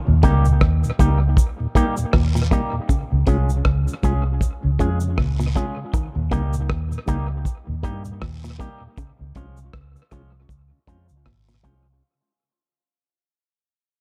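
Roots reggae at a relaxed 79 BPM in 4/4, this laid-back, sunny clip swings its sixteenths gently and rocks between Eb and Db chords as the whole passage fades out over its 12 seconds. A dry, cloth-damped drum kit with a tight kick, hi-hat and rim clicks sits up front beside a round, punchy, foam-muted fingered bass that moves low between Ab1 and G2. An electric guitar run through an envelope filter plays clean, compressed accompaniment with tape echo, while a hollow-bodied semi-hollow guitar adds arpeggios further back. In the background, a mellow, flute-like tonewheel organ turns through a slow rotary speaker with tape echo of its own. Cabasa and guiro add faint texture, and the mix carries small-room ambience with a heavy wash of echo.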